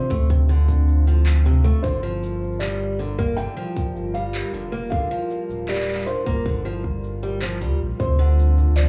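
Recorded at home on cassette with a small room's ambience and little reverb, this short folktronica fragment has an intimate, lo-fi character and a wistful, autumnal mood. At 78 BPM in a straight 4/4, a felt-muted upright piano carries the melody with a soft, dark, boxy tone and short sustain, colored by tape and analog delay. Beneath it, a picked old ladder-braced acoustic guitar plays arpeggios with audible finger squeak, while a warbling, detuned pad built from sawtooth and triangle tones holds slow-blooming chords through chorus, phaser and its own reverb. A deep, round sine sub bass sits up front with tube saturation. A tight, tape-warm electronic kick and an overdriven electronic kit of handclaps, shaker and toms, both re-recorded in a large room, join at 0.1 seconds, with the kick dropping out at 8.2 seconds. The harmony moves from Dm7 to Gm7 at 1.8 seconds, returning to Dm7 at 8.0 seconds.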